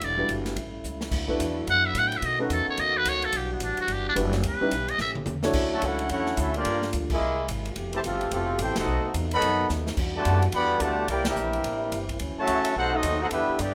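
A buzzy, raspy trumpet with a metal mute leads this joyful big band swing excerpt, playing an up-front solo with vibrato and scooped notes until about 5.1 seconds. Beneath it, a muted trombone section holds veiled, mellow sustained chords, while a woody, thumpy upright bass and a polished swinging drum kit with a punchy kick carry the groove throughout, the drums dropping in fills along the way. A concert grand piano with deep bass adds accompaniment through the opening stretch. At 5.7 seconds a trumpet section with light vibrato takes over the melody, joined by a distant, roomy trombone section on a second line, and the full band hits brassy accents at moments such as 7.1 seconds. The harmony moves through rich extended jazz chords, and a moderate large-studio reverb gives the ensemble an airy, hall-like space.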